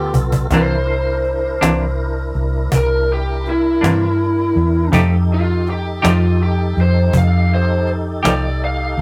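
Slow blues in 12/8 at 54 BPM in C mixolydian, this swaggering, laid-back clip opens on a brief drum fill from a snappy cajon with snares before the lead guitar solo takes over at 0.5 seconds. The lead, played through a small cranked amp, is dark, overdriven and lo-fi, sitting up front with picked lines. Beneath it, a clean, bright semi-hollow guitar adds picked accompaniment with tremolo, while a round, punchy, foam-muted vintage bass anchors the low end. A tonewheel organ holds sustained chords in the background, lightly overdriven with key click, chorus vibrato and a slow rotary speaker. The harmony moves from G9 to C9, then to F9 at 4.9 seconds, all captured in a rough rehearsal-room recording with tube saturation and moderate studio reverb.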